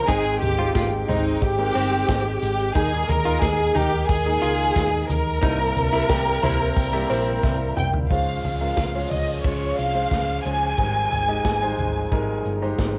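Over a straight 4/4 groove from a distant, roomy drum kit played with bundle sticks, this bittersweet, dramatic piano-driven pop excerpt sets a lush, up-front bowed violin section melody against polished grand piano accompaniment, a round, punchy hollow-body electric bass, a clean, compressed direct guitar riff that stops at 7.6 s, a very quiet, lightly overdriven tonewheel organ and a jingly tambourine in the background, with piano and drum fills leading at 8.1 s into a passage where a background electronic downlifter appears, the whole captured as a home cassette recording.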